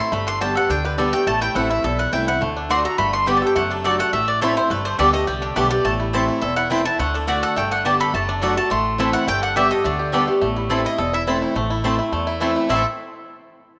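Bluegrass in A dorian at a brisk 210 BPM, rustic and lonesome, this short excerpt opens with a bright, twangy fingerpicked banjo and an up-front, double-strung mandolin sharing the melody over a boxy picked archtop guitar and a thumpy, gut-strung upright bass. From 2.7 seconds a second, mellower mandolin adds stabs from the background, while the chords cycle through Gadd9, Am, D and D/F#. A drenched echo-chamber reverb with a 2.1-second tail hangs over the performance, lending it a haunting, spacious air.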